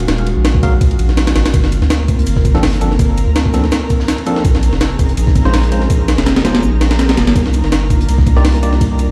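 A gritty, compressed sampler-style breakbeat with a thumpy kick and high-tuned snare drives this raw, frenetic 165 BPM drum and bass and jungle excerpt in G minor, swung on the 16ths over a deep, round dub sub bass, while an airy, breathy pad with vintage 12-bit grit holds minor eleventh chords in the background, a bell-like tine electric piano stabs through dub echo from 0.6 seconds, a very quiet, dark, saturated acoustic kit with hi-hat and shaker slips in at 1.5 seconds, and a twinkling granular shimmer arrives at 2.2 seconds, all set in a big bare room with large studio reverb and vinyl crackle.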